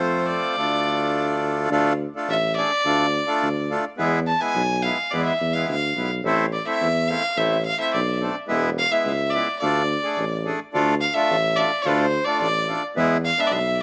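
Klezmer in a brisk 2/4, bittersweet yet festive, this short cut from a longer piece sets a single bright, nasal violin with light vibrato and an airy, earthy bow tone out front, touched by analog delay. Close-miked, reedy accordion in a dry tuning fills out the accompaniment while a vintage-sounding tuba with light vibrato carries the bass in a jazz style, all three playing throughout. Light reverb frames the trio as the harmony moves from F and D minor through E and A minor, returning to E at 13.0 seconds.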